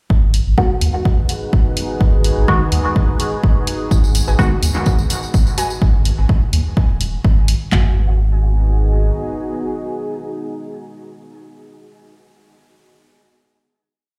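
This short dub techno piece in G# minor moves at 126 BPM in 4/4 with a light swing on the sixteenths, driven by a punchy analog drum machine playing a four-on-the-floor kick with floor toms and claps, while a tape-toned electronic hi-hat ticks through programmed hats and backbeat. Underneath, a soft, round dub sub bass plays a dotted rhythm with tube saturation and sidechain pumping, sitting up front with the drums until about 9.1 seconds. Muted, detuned sawtooth chord stabs echo sparsely through a phaser and dub echo, one shape moved in parallel, while a moody, wave-folded ambient pad holds a G#m7 chord with slow attack and long release. A breathy, wind-like tuned noise holds a high note in the background, a jingly hand-played tambourine adds sixteenths from 3.9 to 5.8 seconds, and from 4.3 seconds a warbling, lo-fi, dusty pluck enters with chorus, phaser and dub echo. After the groove drops away, the stabs, pad and pluck ring out on a final chord from 7.7 seconds, the whole cavernous, meditative piece bathed in large studio reverb as if played on a big sound system in a bare room.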